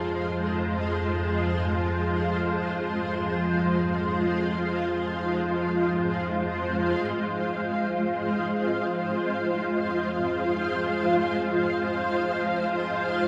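Soaked in plate reverb and dreamy haze, this dark, cavernous ambient drone in F minor drifts in free time as an up-front, cloudy granular pad holds sustained chords over a calm, organ-like drone, while a worn grand piano's barely audible arpeggios and a very quiet, ringing quartz singing bowl drop out at 7.0 seconds, after which the drone swells in through to 13.3 seconds in this excerpt cut from a longer piece.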